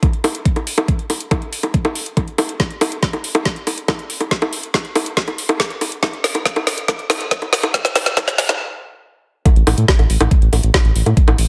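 A straight 4/4 pulse at 140 BPM drives this hypnotic, intense psychedelic trance passage, which is cut from a longer piece. From the start, an up-front electronic kick with a knocking, layered punch sits alongside a garage drum kit of bongos, metallic hi-hats and a woody snare, both carrying the small-room character of being re-recorded. The opening stretch up to 9.5 seconds is a build-up under a filter sweep, with a drum fill from 2.6 to 8.6 seconds before the music stops short. Just after the drop at 9.5 seconds, a round analog bass enters at 9.6 seconds, its detuned blend of sawtooth, sine and triangle tones giving a deep, dark, sustained body with a fast attack between A1 and A2. The whole recording sits in light reverb and is shaped by a high-pass filter.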